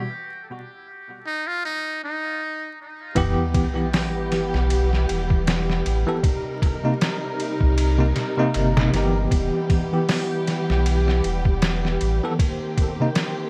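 Dark, woody strings hold lush sustained chords throughout this smoky, brooding trip hop fragment, where a buzzy metal-muted trumpet sings a brief jazz phrase through tape echo before, at 3.2 seconds, a bell-like tine electric piano with tremolo and 12-bit grit, a round sine sub bass, a muffled, pitched-down sampler-style drum kit with a thumpy kick and a distant electronic sub drop all arrive together in an echo-heavy mix dusted with vinyl crackle.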